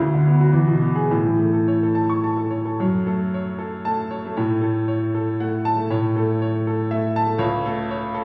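In 3/4 with free rubato, the tempo drifts between 101 and 123 BPM, giving this romantic character piece for solo piano a breathing pulse. The mood is lyrical and warm, set in F# minor with tuning at A4 = 443 Hz. A bright grand piano carries everything alone from start to finish, ranging from C#2 up to C#6. Its tone is brilliant and smooth with a vintage quality and long sustain, and it sits up front in a wet recital-hall reverb that lingers for about 1.9 seconds, touched by a small-room ambience. The opening phrase moves through Bm/D, E and A before a second passage begins at 2.8 seconds on F#m, passing through F#m/A and A to settle on A/C#. This fragment is cut from a longer piece.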